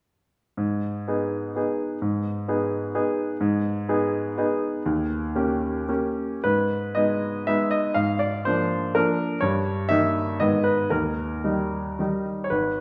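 Dotted rhythms drive this romantic triple-time dance, a short cut from a longer classical piano piece that sways with a free, rubato feel. The mood is wistful and nostalgic. A solo grand piano, clear and present, carries everything from 0.6 s to 12.8 s, ranging from a deep G#1 up to E#5 and tuned to A4 = 437 Hz. The playing falls into two sections, the second beginning at 6.4 s, with the harmony moving between its minor home chord and dominant sevenths. A wet, large studio reverb surrounds the instrument, and the listener seems placed further back in the room, lending the dance a gently distant air.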